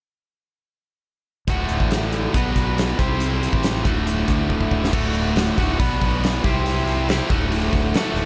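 Swaggering and sunny, this classic rock excerpt rides a straight 139 BPM in D mixolydian, with an overdriven, double-tracked electric guitar riff placed up front over a fingered bass with a warm, direct tone, all entering together at 1.5 s. A huge acoustic arena kit in a hall sound adds a punchy kick, fat snare and bright cymbals, and a drum fill at 4.5 s leads into a new section at 4.9 s as the chords cycle through D, B minor and C under light reverb.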